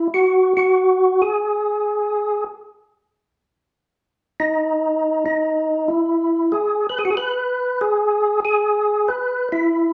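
A swung 4/4 pulse at 94 BPM, with eighths swung at 69%, drives this bluesy, smoky jazz excerpt in G# minor, tuned to A4 = 443 Hz. A percussive tonewheel organ plays solo and up front for the full 9.9 seconds, moving between D#4 and B4 with a fat, lightly overdriven tone, key click, third-harmonic percussion, chorus vibrato and a fast rotary speaker. A wet, large studio reverb surrounds the organ, and the recording carries the feel of a band playing live in one room.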